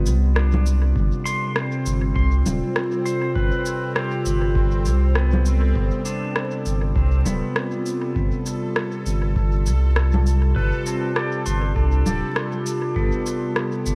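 A twangy, fingerpicked pedal steel guitar plays clean arpeggios with volume swells and slide, trailed by tape echo, in this spacious, peaceful ambient dub excerpt at 100 BPM in G mixolydian, with swung sixteenths over a single G9sus4 chord. A warbling, detuned, lo-fi pad holds dark sustained chords under chorus and reverb, a round sine sub bass sits up front, and a bright, bubbling sawtooth texture steps through resonant filter changes from 0.2 seconds. Tape-toned electronic shaker, rim click and congas with dub echo enter at 0.1 seconds, a deep analog kick drum sits in the background from 1.0 to 13.1 seconds, and vinyl crackle with light digital ambience colours the recording.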